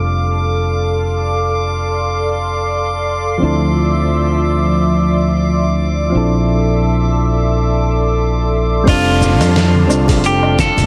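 A lush, warbling unison pad holds up-front chords over this blissful, smooth sunset chillout excerpt in free time, joined by round electric-piano-like synth keys under a filter sweep, a warm fingered electric bass and a glassy texture of drifting overtones. At 8.9 seconds a bright, clean picked electric guitar melody enters with spring reverb and delay, alongside a gritty, tape-warm, dusty soul drum kit with a fat snare, a soft electronic kick, a background downlifter, and, from 9.2 seconds, very quiet distant congas and bongos. The whole piece sits in a concert hall reverb with a heavily compressed, radio-like sound.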